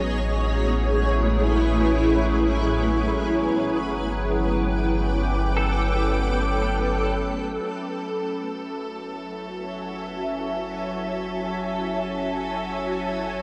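In free time, this melancholic, reflective ambient passage, cut from a longer piece, drifts over a dreamy mix soaked in plate reverb. Up front, a cloudy, blurred granular pad holds sustained chords moving from Amaj7 to Gadd9 and settling on F#m9, its detuned unison layers given body by ensemble chorus and their own reverb. Beneath it, a round, mellow sub bass sits deep and steady, while a resonant sawtooth drone with moving overtones hums through chorus and its own reverb. A clean, twangy electric guitar plays brief fingered arpeggios in the background from 5.6 to 6.9 seconds, carried by ensemble chorus and delay. From 7.7 seconds a chamber violin section adds a clear, biting, earthy bowed texture with light vibrato, lending the closing stretch a gently aching glow.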